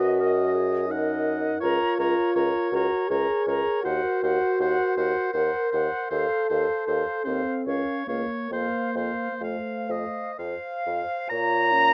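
Classical slow romantic movement for wind quintet in triple metre with free, rubato phrasing, its mood melancholic and yearning across this brief portion of a longer piece. An airy concert flute with vibrato and a soft attack carries the melody close to the listener, while a clear oboe with light vibrato sings a second line alongside a sombre French horn and a shadowy, distant clarinet tucked into the background. A mellow, roomy bassoon anchors the bass as the harmony drifts through minor and half-diminished colours to a dominant chord and settles on the home minor chord at 11.3 seconds, all within light reverb and close, detailed sound.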